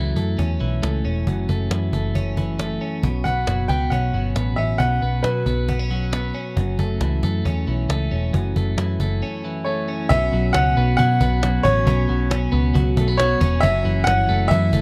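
A straight 4/4 pulse from a woody cajon with faint snares drives this wistful, restless jangly indie pop, with a dark, foam-muted picked electric bass sitting up front beneath twangy, compressed twelve-string electric guitar arpeggios bathed in spring reverb, while a brilliant upright piano with audible action noise carries the melody through tape echo from 3.2 s and again from 9.6 s, during a break that begins at 9.2 s, in a dry, close 1970s-style studio recording.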